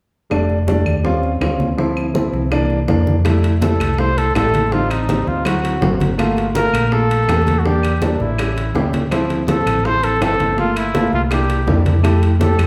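Sunny and danceable, this Afro-Cuban jazz excerpt in F major moves at 164 BPM in a straight 4/4, with an intimate grand piano showing audible action noise and a dark, round hollow-body electric bass up front, set over background congas, tight high-tuned bongos and woody claves, while ringing metal-shell timbales enter at 3.3 seconds and a solo trumpet with light vibrato, scooped notes and tape echo takes the melody from 3.6 seconds, all heard from further back in a large, reverberant studio.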